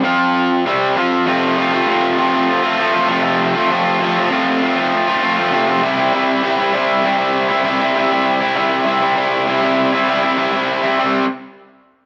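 A raw, overdriven electric garage guitar carries this sunny, swaggering rock clip alone from 0.0 to 11.3 seconds, picked bright and double-tracked up front, moving from F5 and C5 power chords into full F and C chords between F2 and F4. The straight 4/4 groove sits at 99 BPM, tuned to A4 = 444 Hz, and a brief return to C5 at 11.0 seconds closes this fragment of a longer piece. Light reverb and a digital ambience give the guitar a touch of space.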